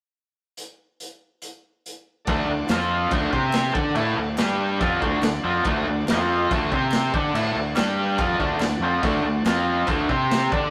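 A straight 4/4 beat from a gritty, pumping small-room drum kit opens this swaggering, rowdy garage rock excerpt on its own until a buzzy vintage combo organ slips into the background with sustained chords at 2.2 seconds. At 2.3 seconds a bright, double-tracked overdriven guitar riff arrives up front alongside a dark, round fuzz bass, and very quiet, crisp group handclaps join at 2.7 seconds, all in a rough rehearsal-room recording with tube saturation and a wet stone-room reverb.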